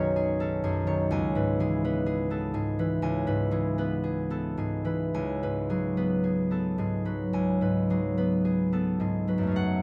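Close, detailed microphones and a light reverb place a solo concert harp up front, its ringing, warm acoustic tone captured with intimate clarity. This short classical passage, cut from a longer piece, carries a mysterious yet gentle mood. It moves slowly in 4/4 at roughly 52-64 BPM, with a rubato feel that lets the time breathe freely. The fingerpicked harp spans a range from B1 to G#5, tuned to A4 = 439 Hz. The harmony opens on B69, shifts to C#m7 at 1.1 seconds, and settles onto C#7sus4 at 5.1 seconds, leaving an unresolved, searching quality as the harp plays alone until 9.8 seconds.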